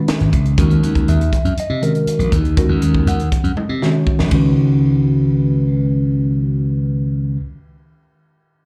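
This electric jazz fusion excerpt, cut from a longer piece, moves at 120 BPM in a straight 4/4 with a slick, funky mood. A worn, slightly out-of-tune tine electric piano comps from the start, its clean tone heard through its built-in speakers and colored by phaser and slapback echo. Just after, a bright, amped slap bass sits up front with a punchy edge, while a crisp acoustic fusion kit, with a high-tuned snare, punchy kick, hi-hat, ride and toms, brings a pumping small-room sound. The harmony shifts from C#9sus4 to D#m7 and back to C#9sus4. A drum fill begins at 3.6 seconds, the kit drops out at 4.4 seconds, and piano and bass carry on into the next section. The whole take has the feel of a live gig through the venue's PA, fairly dry but with a touch of club reverb.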